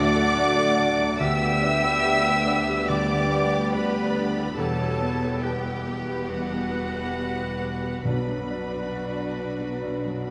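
A distant, lush violin section carries the sorrowful melody high above a full orchestra in this bittersweet, emotional film-score passage, cut from a longer piece and played with a free, rubato feel. Around it, a bright solo oboe, a dark, smooth-topped clarinet, an airy flute ensemble and a second, softer violin section weave supporting lines, while a brilliant baby grand piano with long sustain and a very quiet, rich viola section fill in the accompaniment. Mellow French horns hold sustained chords in the background, and a concert harp adds gentle, ringing fingerpicked arpeggios. Rich cellos and a clear double bass section ground the harmony as it moves from D through G over D and E minor add9 to B minor. Very quiet, round-toned timpani played with soft mallets enter briefly at 8.0 seconds, and the whole ensemble sits in a generous concert hall reverb.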